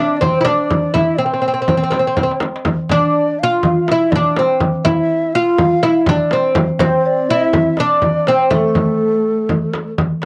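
This home recording on cassette has a light reverb. It is a short excerpt of an Arabic maqam ensemble in a straight 4/4, with a longing, soulful mood. A bright, woody fretless oud carries the melody up front, plectrum-plucked on its double strings in a low register. Above it, a breathy low ney plays a second line with an end-blown reed cane tone, tongued notes, expressive vibrato and a cassette-tape colour. From 0.2 seconds, a crisp, high metal-shell darbuka in a small room and a deep, large frame drum struck with hard hands enter together, the frame drum's sound compressed and saturated. A drum fill runs from 2.2 to 2.7 seconds, and the percussion sits beneath the oud, level with the ney.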